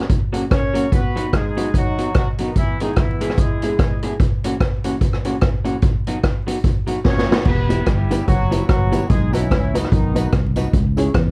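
A bouncy 4/4 ska groove at 147 BPM drives this short excerpt, its eighths swung at 59% and its tuning sitting slightly low at A4 = 437 Hz, in B major with a joyful lift. A street-band drum kit plays throughout with crash cymbal, hi-hat, boomy kick, rim click and a medium-tuned snare, sounding up front with dark cymbals and a rolled-off top, while an electric guitar through a small old amp keeps up a slightly broken-up, picked, lo-fi accompaniment from the start. A punchy horn section carries the melody in octave doubling with vibrato, distant and roomy, entering at 0.5 s and returning during a drum fill for a second phrase from 7.1 s. At 7.5 s a fingered electric bass arrives with a round, foam-muted tone, followed almost at once by jangly, detuned stabs from a honky-tonk upright piano in the background and a very quiet, jingly tambourine. The chords move from F# through B and E to F#7, then back to B before Em, B and C#m, all wrapped in a dark production with light reverb and a layer of vinyl crackle.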